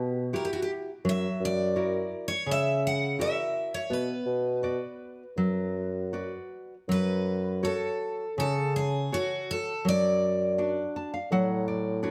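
Fado-style ballad in 4/4 at 82 BPM, played rubato with a mournful, longing mood, moving from B harmonic minor into F# minor at 6.9 s through chords such as Emadd9, F#7, Bm and D/F#. A shimmering, octave-doubled twelve-string acoustic guitar carries the picked melody until 10.9 s, while a fingerpicked nylon-string guitar with a deep classical tone supplies accompaniment and a closing fill from 10.6 s. A dark bassoon with light vibrato and a smooth top anchors the bass, with all three parts up front, finger squeak audible on both guitars, and close, detailed microphones under light reverb.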